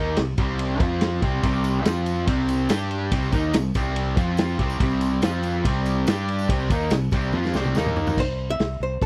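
Confident and driving, this short classic rock excerpt at 142 BPM opens with a bright, double-tracked overdriven guitar riff over power chords on C, F and G, joined by a growling fingered electric bass and a vintage drum kit with muffled, dark cymbals and a tight kick, while a jingly tambourine sits distant in the background from 1.4 seconds. A drum fill leads to 8.2 seconds, where the riff gives way to a clean, hollow-body archtop guitar melody placed up front. The dry, close studio sound carries a 1970s character.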